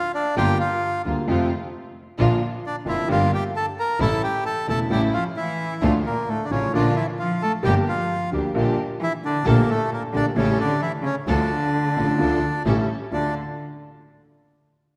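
This tango excerpt is passionate and sultry, moving with a rubato feel that pulls the pulse in and out. A reedy, close-miked bandoneon carries the melody from the very start, sitting dry and full up front. From 0.4 seconds a concert grand piano with deep bass and long sustain supplies the accompaniment, a woody bowed double bass with vibrato and portamento anchors the low end, and a distant studio string section adds soft-attack stabs. At 4.9 seconds a bowed cello enters with a nasal, boxy second line, expressive with its own vibrato and portamento. The harmony circles through minor-key changes, leaning on A7 before settling back on Dm, and the ensemble sits in a wet concert hall reverb.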